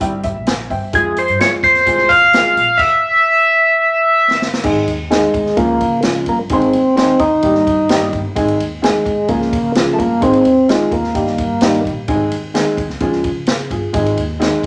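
Joyful and danceable, this uptempo 1960s-style soul cut at 129 BPM in Ab major opens with a dark, slightly detuned upright piano fill, its boxy, worn tone and audible action noise sitting up front over woody pizzicato upright bass and a swinging big-band drum kit with a punchy kick. At 1.0 s a percussive tonewheel organ takes the melody through a slow rotary speaker, full and clicky at the key, until 11.8 s, while a drum fill at 3.7 s leads into a section cycling through Ab, Db and Eb/G. A large studio reverb gives the whole band a wet, roomy sheen.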